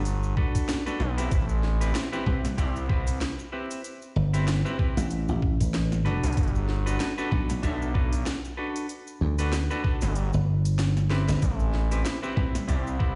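A saturated, sawtooth-edged synth bass opens this gritty, funky glitch hop excerpt, joined almost at once by a cracking snare and crisp hi-hats, a grainy cabasa in the background, clean semi-hollow guitar stabs roughened by 12-bit sampler grit with sidechain pumping and delay, and a pitched-down, thumpy kick, before a punchy thumbed slap bass arrives at 2.3 seconds; the kick drops out at 10.2 seconds and a short drum fill follows at 11.1 seconds, with a swung sixteenth-note feel, stone-room reverb and vinyl crackle colouring the mix.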